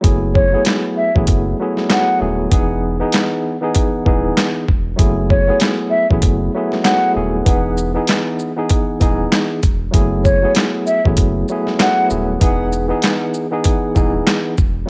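A dry, dusty home-cassette sound frames this dark, tough boom-bap hip-hop excerpt at 97 BPM with a swung 16th feel in F# dorian, where a gritty, overdriven sampler-style drum kit sits up front with a thumpy kick, medium-tuned snare, handclaps, hi-hat and shaker over a deep, thick saturated sub bass. A clean tine electric piano, filtered and tape-coloured, carries the F#m11 to Emaj7 chords, while a breathy, mellow concert flute with unsteady vibrato and tape echo plays the melody from 0.3 to 12.1 seconds. Barely audible finger snaps slip in at 10.6 seconds.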